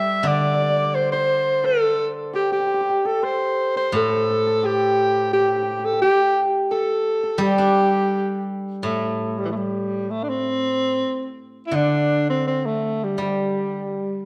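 A breathy alto saxophone leads this festive, graceful piece of Chinese traditional chamber music, its clear, up-front solo line colored with vibrato, subtone and a jazz-inflected phrasing over a loose rubato feel in 2/4. A shimmering, ringing hammered dulcimer adds a second line until 10.6 s, while a silvery steel-string zither, played with fingerpicks and sitting forward in the mix, carries the accompaniment. The dark, warm sound sits in a moderate recital-hall reverb, with a new section arriving at 8.8 s before this short piece cut from a longer work ends at 14.3 s.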